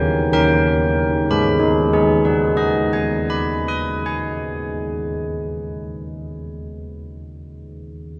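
Classical music for church bells, this short fragment from a longer piece is played by a solo carillon in G# minor at a slow 63 BPM in a straight 4/4, with the instrument tuned slightly high. The mood is solemn and wintry, the bronze bells ringing across a span from D#3 to D#6 with a bright, full tone and a distinct minor-third overtone, plus the knock of a worn iron clapper. The bells sit close and up front, yet the church around them adds a long, wet reverberation that lets each stroke hang in the air. The opening phrase slows down over a D#7 chord during its first 1.3 seconds before settling onto G# minor for the next passage. The carillon falls silent at 6.6 seconds, leaving the hall's decay to carry the final tones.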